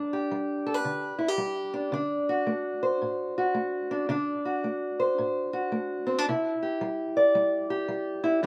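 A fingerpicked steel-string parlour guitar carries this swaggering, gritty blues alone, its dark, boxy tone sitting up front with a slapback echo, spanning G2 to D5. At 111 BPM in 4/4 with a swung eighth-note feel, it moves through G, D at 1.9 seconds and C at 6.3 seconds in this brief 8.5-second cut from a longer piece. Recorded outdoors with little reverb, the sound is dry and close, with the tuning sitting slightly below standard pitch.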